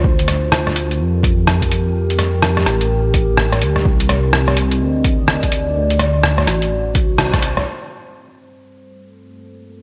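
A muffled, pitched-down lo-fi drum kit of hi-hat and rim click sits up front over a punchy layered electronic kick in this melancholic, ghostly future garage excerpt in G minor at 126 BPM, swung on the 16ths. A deep, rumbling detuned saw bass and a moody analog pad with chorus and phaser both pump against the kick, moving from Gm11/D through Cm7 and D7 in a dreamy hall-soaked mix. After a band accent at 7.2 seconds, the drums and bass drop out and the pad holds Gm11 alone under a filter sweep from 7.7 to 9.8 seconds.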